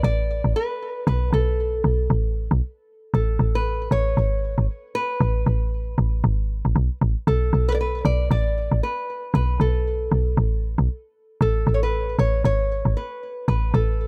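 The recording sits in a studio ambience that surrounds the two parts. This deep, soulful amapiano piece moves at 116 BPM in 4/4, with a 58% swing on the sixteenths, in B dorian and tuned to A4 = 439 Hz. A woody log drum bass carries the low end throughout, punchy and up front, its fast-attack, decaying notes blending an FM tone with a noise layer into a mellow thump. Above it, a small, fingerpicked nylon-string guitar plays the melody for the full 14.1 seconds, acoustic and warm, sitting up front and trailed by a delay. The harmony moves from a B7 with its third omitted through Amaj7sus2 at 2.9 seconds, Bm7 at 7.3 seconds and Amaj9 at 11.2 seconds. The recording is cut from a longer piece.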